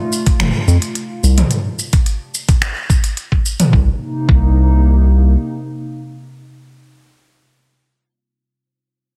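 A small room and a heavily compressed, radio-like sound frame this short, hypnotic and mystical organic downtempo excerpt in C dorian at 108 BPM, where a warbling, nostalgic lo-fi pad holds sustained chords with chorus, built-in reverb and sidechain pumping from 0.0 to 6.7 seconds, moving from F to Cm7 at 3.7 seconds. Up front, an organic electronic drum kit of finger snaps, crisp hats, shaker and toms plays until 3.7 seconds alongside a gritty, thumpy sampler-style kick. A round, deep analog bass with a fast attack and its own sidechain pumping sits loudest in the mix, ringing out until 5.4 seconds.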